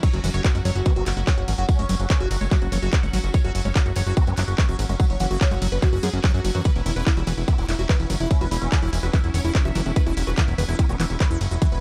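Psychedelic and alien, this dark psytrance cut pumps a tight, up-front electronic kick and a fat, detuned sawtooth analog bass beneath punchy supersaw stabs with phaser, 12-bit grit and tape echo, a squelchy acid bass riff with phaser and digital delay, a bright, pulsing gated chord texture, a nasal vowel-sweep wobble bass that sits back from 0.9 to 4.3 seconds and again from 7.5 to 11.0 seconds, a garage kit with crash, ride, hi-hat and handclaps, and a distant, jingly tambourine.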